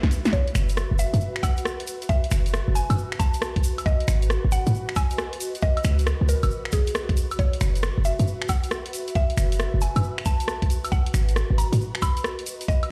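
Heard through a big sound system in a bare, stone-reverberant room, this soulful, bouncy two-step UK garage excerpt at 136 BPM in F# dorian swings its 16ths over an overdriven, knocking electronic kick and a dry, punchy analog drum machine of finger snaps, hi-hat, rim click, snare and woodblock, with a tight, up-front 808-style sine bass, a grainy egg shaker, an ethereal, detuned pad pumping under sidechain with ensemble chorus, and a woody, round FM mallet pluck that carries the melody through chorus, phaser and dub echo from 0.3 seconds.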